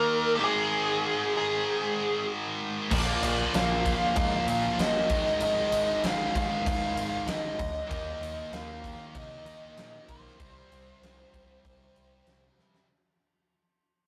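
This hard rock excerpt in C minor opens with a dark, nasal lead guitar carrying the melody up front, its wah parked and its tone overdriven, over a bright, high-gain riff from a double-tracked distorted guitar. At 2.9 seconds a second distorted guitar joins the riff from the background, along with a growling, overdriven electric bass and a huge arena drum kit. The kit has a punchy kick, a fat snare and crash and ride cymbals in a pumping hall. The mood is heavy and driving at a steady 96 BPM in straight 4/4, with the chords moving from Ab5 to Bb5, back to Ab5, then on to Eb5 and C5. The sound is a rough rehearsal-room take with tube saturation and a wet small-room reverb, fading out across the whole passage until a drum fill at 12.6 seconds closes the cut.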